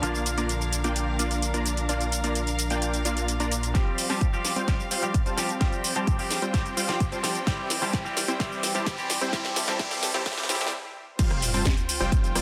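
A straight 4/4 pulse drives this triumphant, euphoric festival progressive house cut, where a bright, detuned supersaw stab riff with vintage 12-bit grit and a filter sweep pumps over a clean hollow-body electric guitar with subtle chorus and delay, earthy bowed studio strings in the background, and a house kit with cracking snare and metallic hats. Very quiet swells and risers creep in at 3.2 seconds, then a thick, saturated saw bass drops out at 3.7 seconds as a punchy electronic kick enters, and together the kick and effects carry the build-up to a stop at 10.7 seconds, with the bass returning on the drop at 11.2 seconds.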